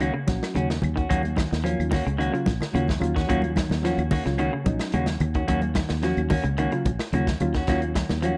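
A round, dark fingered electric bass anchors this defiant, intense afrobeat groove at 109 BPM in Eb minor, held on a single Ebm7 chord, over a gritty, saturated breakbeat kit with a tight kick and rolled-off top, while a reedy electric piano plays accompaniment, a twangy guitar at the edge of break-up picks arpeggios in the background, a bright, clean guitar adds spring-reverbed stabs, and woody claves and thin-skinned congas (entering at 0.3 s) sit softly behind, all captured in a dry, close 1970s-style studio sound with light reverb in this short cut from a longer piece.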